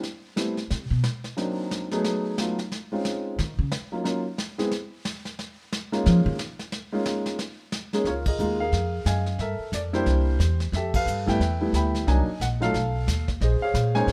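Lightly reverberant and intimate, this playful, warm jazz piano trio swings briskly at 180 BPM in 4/4, with a vintage brushed drum kit of dark cymbals, tight kick and medium-tuned snare sitting back in a small room, a woody pizzicato upright bass up front dropping brief notes before settling in from 6.1 seconds, and a short-sustain baby grand piano carrying the melody over rich extended harmony into a second section marked by band accents at 8.2 and 10.9 seconds.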